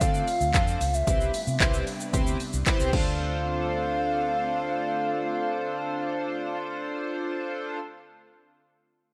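A straight 4/4 dance-pop groove opens on a dry, punchy analog drum machine of kick, handclaps, hi-hat, shaker and crash cymbal, which drops out at 3.1 s, while a dark, round, foam-muted electric bass sits underneath with sidechain pumping. A glossy, retro chorused polysynth and a breathy pad with phaser pump along too, and a hollow, woody clarinet-like synth lead carries the melody with vibrato, chorus and delay. The mood is bittersweet yet confident, heard in a rough home demo mix with light digital reverb, cut from a longer piece.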